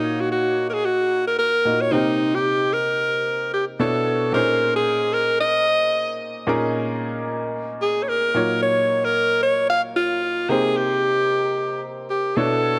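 Deep and late-night, this amapiano passage moves at 112 BPM in Bb minor with a 58% swing on the sixteenths, cut from a longer piece. An edgy, present alto saxophone with scooped notes carries a pop-style solo melody through a digital delay, while an up-front grand piano with a clear, worn, natural tone plays the chords, with both parts running the full 12.8 seconds. A drop arrives at 4.3 seconds as the harmony settles on Bbm11, and a moderate plate reverb gives the whole performance a lingering, spacious tail.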